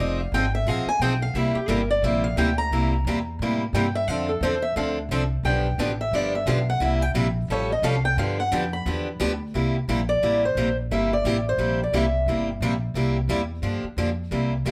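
A bright, boxy steel-string parlour guitar opens this playful piece of acoustic string swing with a solo, its fresh strings and audible finger squeaks sitting up front alongside a picked archtop guitar and a woody upright bass. The tempo is a brisk 176 BPM in 4/4 with a swung eighth-note feel, set in C mixolydian and moving through changes such as Fm7, C7, Dm7, G7 and an A7alt before settling back on C7. The archtop carries the melody in a warm, boxy voice, while the bass, played pizzicato on gut strings, gives a thumpy low foundation. At 9.5 seconds the steel-string solo gives way to a new section, and the archtop drops out at 12.5 seconds, leaving the steel-string guitar and bass to close on a Gm7 at 13.6 seconds. A moderate club reverb gives the trio the sound of a club room, and the recording is cut from a longer performance.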